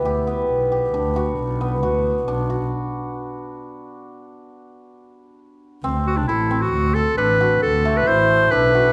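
Contemporary chamber music in 7/4 with a straight feel, this short passage cut from a longer piece feels urgent and hypnotic. A shimmering, ringing hammered dulcimer plays arpeggios up front throughout, while a single bowed double bass carries the low line close and intimate, with light vibrato, a soft attack and an airy bow. A stop interrupts the flow from 2.7 to 5.8 seconds before the music moves into a new section. At 6.1 seconds a punchy, warm clarinet takes the melody as a classical-style solo, sitting clearly above the other parts. A wet recital hall reverb surrounds the trio with a sense of space.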